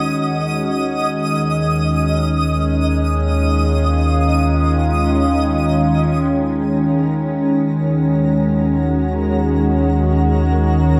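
In free time, this reflective, melancholic ambient passage in E-flat minor drifts along, cut from a longer piece. An evolving wavetable pad sits up front from the start, holding sustained chords with a slow attack and long release, its detuned unison voices morphing under chorus. It moves from Ebm to Dbadd9/Eb at 0.8 seconds and returns to Ebm at 6.3 seconds. Above it, a twinkling granular texture sparkles brightly in the upper register with an octave-up shimmer. Beneath, a deep, ominous drone on a low E-flat fades in from 1.5 seconds, its dark, nasal rumble colored by ring modulation. A wet plate reverb with a 2.4-second decay bathes the whole mix in a spacious, glistening haze.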